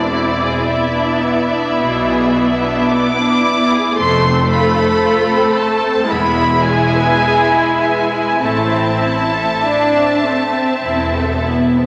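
Played in a free, rubato 4/4 at 48-58 BPM, this slow romantic movement for string orchestra is a short, melancholic and solemn passage cut from a longer piece. The first violins carry the melody up front, their bowed tone rich and focused with vibrato, while a second violin line moves beneath them with a smooth, even sound. The viola section sits prominently in the accompaniment, bowed with vibrato and a rich, smooth tone. The bass line is shared by a bright, intense cello section set back in the mix and a clear, distant double bass section, both played with light vibrato. The harmony moves from E7 to F at 4.0 seconds, back to E, and settles on Am at 8.4 seconds. All of it sits in a wet concert hall reverb that lends the ensemble a spacious, solemn glow.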